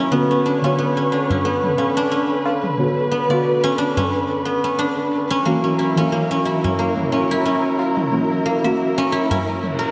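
A deep, detuned chord stab with chorus and a veiled, con sordino string section open this earthy, meditative organic downtempo piece at 90 BPM in B harmonic minor. An up-front guzheng plays silvery, fingerpicked arpeggios, and both the guzheng and the stab are bathed in diffuse ambient delay as the harmony moves from Bmadd9 to F#7. Overdriven electronic shaker and toms sit in the background from 0.1 s, a close, dry, high-tuned tabla joins at 0.6 s, and a reverse cymbal appears at 9.7 s, all within a dreamy mix soaked in lush hall reverb.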